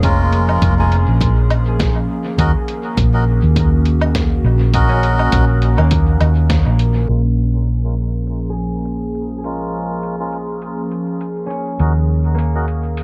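A warbling, detuned pad of sustained Bbm7 and Ebm7 chords and a round, hollow-body electric bass sitting up front set a deep, meditative mood for this ambient dub excerpt in Bb minor at 102 BPM with a gentle 16th-note swing. From the very start, breathy, nasal melodica stabs are thrown into dub echo, while a fingerpicked concert harp rings out arpeggios in the background through a low-pass filter and analog delay. The rhythm rests on a muffled, pitched-down sampler-style kit of hi-hat, fat snare and woodblock, filtered and echoed as if re-recorded in a small room, with an overdriven, punchy electronic kick underneath. The band hits an accent at 6.5 seconds, the kick drops out at 6.6 seconds, and from 7.1 seconds a filter sweep moves across the drums and harp as the second section begins. The nostalgic, lo-fi pad carries chorus, phaser and its own reverb, all within an echo-heavy mix under light reverb.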